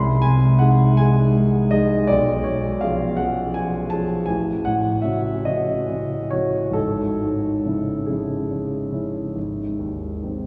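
A polished grand piano opens alone on a G#/B# chord, sitting up front with a present, long-sustaining tone as it unfolds a yearning, wistful romantic nocturne in 12/8 with free rubato, tuned slightly low to A4 = 436 Hz. Across roughly 10.5 seconds cut from a longer piece, the harmony drifts through C#7/B, F#m/A and C#m/G# before returning to G#, with the playing spanning deep bass notes up into the upper treble. A wet, cathedral-like reverb with a long 4.0-second tail surrounds the instrument, lending the church or concert-hall setting a spacious, haloed glow.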